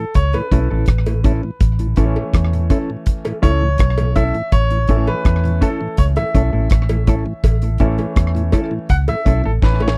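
This sunny, uplifting roots reggae groove moves at 82 BPM in a straight 4/4 feel in A major, cut from a longer piece and captured in a dry, close 1970s-style studio sound with little reverb. A deep, dark drum kit sits up front with a tight kick, high-tuned snare, rim click and hi-hat, its rolled-off top keeping it smooth, and it closes with a fill from 9.6 seconds. Beneath it, a vintage foam-muted fingered electric bass plays round, punchy, amped low notes. A clear baby grand piano takes the spotlight with stabs throughout, its intimate, natural tone carrying audible action noise and long sustain. Behind it, a mellow electric guitar adds clean, compressed accompaniment with subtle chorus and tape echo, while a round tonewheel organ with key click turns through a slow rotary speaker, and a quiet cowbell rounds out the percussion.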